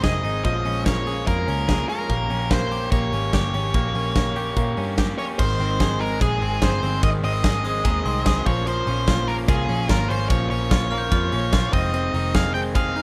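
Restless and bittersweet, this jangly indie pop excerpt moves at a straight 146 BPM in 4/4, set in Bb dorian and cut from a longer piece. An up-front octave-fuzz lead guitar carries the melody with a dark, distorted bite, while a crunchy overdriven guitar sits in the background and a direct-recorded clean electric guitar picks twangy, compressed arpeggios, both touched with plate reverb. Underneath, a vintage foam-muted electric bass gives a round, punchy low end, and a big rock drum kit in a bright stone room drives things with crash and ride cymbals, hi-hat, a medium-tuned snare and a tight kick. The harmony moves from Bbm7 and Eb7 into a second section beginning at 5.4 seconds, passing through Ab, Bbm and Fm7. A very quiet glockenspiel played with brass mallets adds sparkling, bell-like touches around 7.7 and 10.9 seconds. The whole thing has the rough feel of a home demo, with light reverb and a layer of vinyl crackle.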